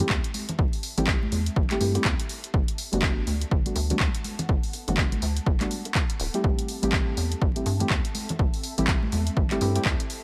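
Deep house at 123 BPM in A dorian, deep and smooth, with a swung groove built on an up-front, tape-warm electronic kick and a punchy analog drum machine of handclaps and hi-hat, while ringing congas and bongos sit close and dry in the background. A rubbery, hollow square bass and soft, dark chord stabs with subtle chorus and delay both pump against the kick as the harmony moves from Am7 to Gmaj9 at 2.5 seconds and back to Am7 at 6.4 seconds. An ethereal, airy pad with ensemble chorus and built-in reverb fades in from 0.3 seconds beneath it all, and the whole cut from a longer piece is dusted with vinyl crackle in a dry sound.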